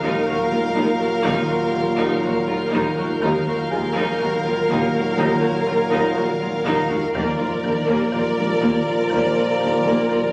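Heard through a phone in the room, with vinyl crackle and a wet club-and-scoring-stage reverb, this uneasy, mysterious suspense cue is cut from a longer piece: a focused violin section carries the melody over a second violin line, smooth, distant violas accompany, and expressive cellos and a double bass section hold a low pedal. Dark trombones and mellow, very quiet French horns sustain the chords beneath a bright, woody marimba riff, a detuned organ-like drone and a saturated, compressed taiko ensemble, while high violins and a warm, very quiet grand piano add texture until 6.6 and 7.2 seconds. Timpani enter at 7.2 seconds with a fill as the harmony shifts.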